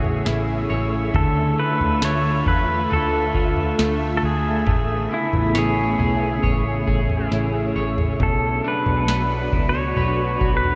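Dream pop fragment, ethereal and floating, where an up-front pedal steel guitar sings the melody with slide and volume swells over silky, warbling string-machine chords, twangy, slightly broken-up electric guitar arpeggios shimmering with chorus and delay, a round, foam-muted picked bass and a booming analog drum machine with a deep kick and tonal snare that plays a fill at 7.3 s, the mix drenched in huge ambient reverb.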